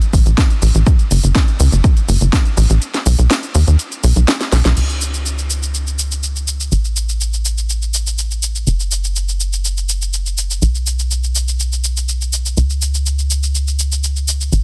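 A tight sequencer bass drives this progressive house excerpt at 123 BPM in a straight 4/4. Its sawtooth and square-wave tone carries a ring-modulated edge and a fast-attack filter pluck that decays into a mellow tail, pumping under sidechain from F#1 to D#2. Up front, an overdriven electronic kick lands with a punchy, layered thump until 2.4 seconds. The house kit rides alongside with a cracking snare, bright hats, shaker and crash cymbal, all dry apart from a small room ambience, and a drum fill at 4.4 seconds ushers in the second section at 4.8 seconds. The mood is emotional and driving, set in a dense, heavily limited modern master with little reverb.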